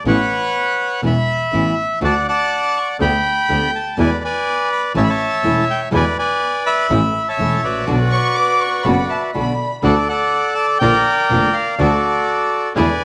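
Set at 123 BPM in 4/4 with a rubato feel, this dramatic, passionate tango fragment in D major has a reedy, bright bandoneon carrying the melody up front over a fingerpicked nylon-string guitar and a distant, focused bowed double bass with vibrato. From 8.1 to 9.7 seconds a background flute with a mellow, hollow tone and a floating, sul tasto violin section add second lines, before a very quiet, smooth studio string section plays stabs from 9.8 seconds to the close. A moderate echo chamber reverb and small room ambience surround the parts as the harmony moves from Aadd9 through E7 and Bm to a Bb chord before settling on D.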